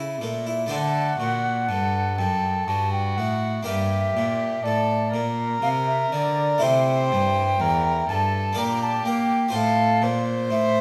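This is a classical, baroque-style sonata movement with continuo in triple time, heard as a brief passage cut from a longer piece, and its mood is introspective and solemn. A brilliant, plucked harpsichord with octave strings and a dark, reedy cello playing a single bowed gut-string line sound from the very start, the cello carrying the bass while the harpsichord fills in the harmony. At 0.7 s a wooden flute takes up the melody in its upper register, airy and crisp in attack with vibrato, joined by a single violin on a second line whose nasal, gut-string tone and audible bow sit close and up front. The harmony moves from A through D7 to G minor and A minor before settling on F/A at 9.5 s, and the period-style playing gives the strings their character and leaves the cello's top smooth. A moderate large-studio reverb gives the ensemble a sense of space around these intimate, old-instrument sounds.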